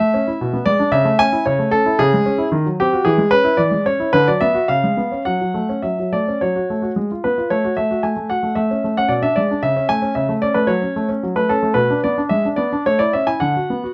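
A polished baby grand piano opens this graceful, elegant classical-period sonatina, heard alone from the start through 13.9 seconds. The playing moves in 2/4 with a flexible rubato feel, and the part spans from B2 up to G#5. The opening phrase comes back at 6.4 seconds, so the music states its main idea twice, with the harmony passing through chords such as C#m, C#7 and F#m before settling toward A and Bm near the end. The close, detailed microphones place the piano up front with a clear, present tone, set in light reverb. This brief passage is cut from a longer piece.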